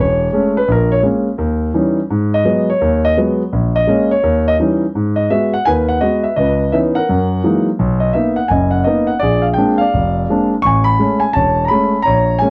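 A dark, mellow concert grand piano plays alone through this smoky, late-night solo jazz piece in G# minor, swinging at 169 BPM in 4/4 with deep bass and a natural, up-front presence. Rich chords such as D#7b9, C#m9 and F#13 move through the 12.5-second excerpt, cut from a longer piece, with the harmony opening into new territory around 4.9 seconds. Light reverb and a worn, warbling cassette-tape character with warbly pitch drift give the recording an aged haze.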